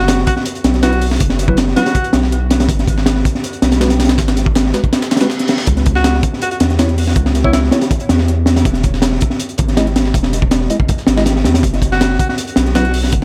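Saturated sub bass, a deep, thick sine tone with tube saturation, sits up front from the start and holds the low end through the whole 13.2-second excerpt of this nostalgic, atmospheric drum and bass and jungle piece in C# minor at 161 BPM. A crunchy breakbeat kit of kick, snare and hi-hat drives the straight 4/4 with a tight kick, a high-tuned snare and a dark, rolled-off top, while a second, sampler-style breakbeat kit of pitched-up, compressed hats and snare, each high-passed, ticks away in the background with tape-warm grit. A worn, slightly out-of-tune tine electric piano adds lightly overdriven stabs with dub echo from 0.8 seconds, tracing the chords F#sus4, G#m, C#m and E. A clear alto saxophone plays short jazz-style phrases between E4 and F#4 with subtone, light vibrato and scooped notes, coloured by vintage 12-bit sampler grit and dub echo, returning at 6.0 and 11.9 seconds. An electronic reverse cymbal briefly rises out of the small room ambience at 5.1 seconds.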